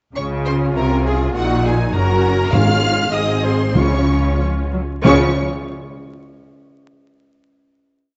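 A quick, lively and cheerful classical-period movement for symphony orchestra in Db major, moving at 92-103 BPM in a rubato 2/4. A distant, vibrato-laden violin melody is doubled at the octave by a focused second violin section, while rich violas weave expressive inner lines with portamento and sustained chords. Lush cellos walk above a smooth, up-front double bass section that doubles the bass line, and round, soft-mallet timpani enter in the background at 2.5 s with single strokes on bass notes before the final chord arrives at 5.1 s, the piece heard through a moderate scoring-stage reverb with vinyl crackle and a dulled top end.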